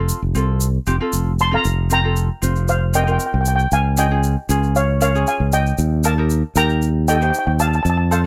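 A light, fingerpicked ukulele and a punchy, growly fingered electric bass open this bouncy, festive calypso excerpt, joined almost at once by a grainy egg shaker. At 1.4 seconds a shimmering lead steel pan enters up front, its mellow, vintage tone struck with soft rubber sticks as the chords move from F through Fsus4 to Db and Eb6. The dry, close sound recalls a 1970s studio.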